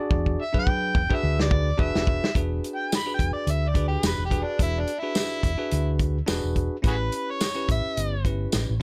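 A dry cut from a longer gritty, soulful straight-eighth soul blues piece, led by an overdriven, amplified harmonica up front whose jazz-style solo, with tongue slaps, scooped notes and light vibrato, sits over a drum fill in the opening 2.4 seconds, while a bell-like tine electric piano adds clean accompaniment, a dark, round, punchy fingered electric bass anchors the low end, and a warm, rolled-off soul drum kit with tight kick, medium-tuned snare, hi-hat and tambourine drives the groove as the harmony moves from E7 to A7 at 6.8 seconds.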